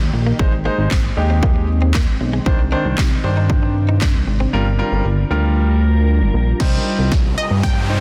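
A dense, heavily limited modern master with light reverb frames this bittersweet, energetic dance-pop cut from a longer piece, moving at 116 BPM in a straight 4/4 in C minor. A glassy, ethereal FM pad sits in the background with sustained chords, ensemble chorus and built-in reverb. A glossy, retro chorused synth bass sits up front, with its pulse-wave and sawtooth tones carrying a mellow filter pluck, and both the pad and bass pump with sidechain. A clear, polished baby grand piano plays accompaniment, also pumping, while a punchy, tape-warm analog drum machine up front drives kick, snare, handclaps and crash cymbal, re-recorded in a large room. A clean, direct-recorded electric guitar picks a compressed riff with analog chorus in the background until 4.5 seconds, over chords moving from Ab through Cmadd9 and Gm7 to Cm. From 6.6 seconds a build-up with a drum fill takes hold, an electronic riser enters at 7.2 seconds, and a round, detuned analog pluck melody with a filter sweep and chorus arrives just before the end.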